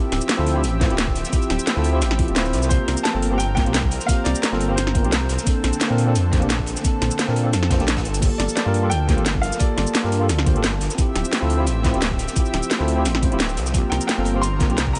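A tine electric piano and a lush, airy unison pad open this melancholic, soulful liquid drum and bass excerpt in D minor at 174 BPM, the piano clean through a combo amp with 12-bit sampler grit and delay, the pad bright and chorused with sidechain pumping. A swelling, detuned saw bass arrives at 0.1 seconds, menacing and tube-saturated up front, alongside two drum layers: a produced garage kit with a cracking snare, metallic hats, shaker and crash, and a dark, gritty breakbeat kit with high-passed hats, snare and room sitting in the background. A knocking, tape-warm electronic kick joins at 0.8 seconds, and the 16ths carry a light swing. A natural baby grand piano with short sustain and tape echo plays the melody in brief phrases from 2.7, 8.4 and 13.9 seconds. The harmony moves through Dm11, C7sus4 and Gm9 before returning to Dm11 and C7sus4, all set in a small room with light reverb and a rolled-off top end.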